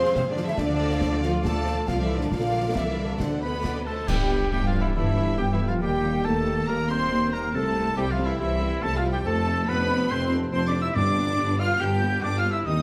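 Heard through a wet recital-hall reverb, this heroic adventure film-score excerpt sounds adventurous and soaring, with a straight 4/4 pulse. A rich, focused violin section carries the vibrato-laden melody, joined by an airy, hollow flute in the background and a very quiet second violin line with expressive portamento, while a soft-attacked viola section, a very quiet mellow French horn section holding chords, and a ringing fingerpicked harp playing arpeggios fill the middle. Cellos and a smooth-topped double bass section anchor the bottom. At the outset a close, dry snare and bass drum pair is joined at 0.6 s by a cymbal swell, clash cymbals and bass drum in a small-room sound, and at 3.4 s a solo oboe with light vibrato and a dark trumpet section with stabs enter. A distant, roomy tuba adds weight from 4.1 s, where the full band accents the arrival of the second section, and a brief stroke of close, dry timpani on G sounds at 11.0 s before the passage is cut.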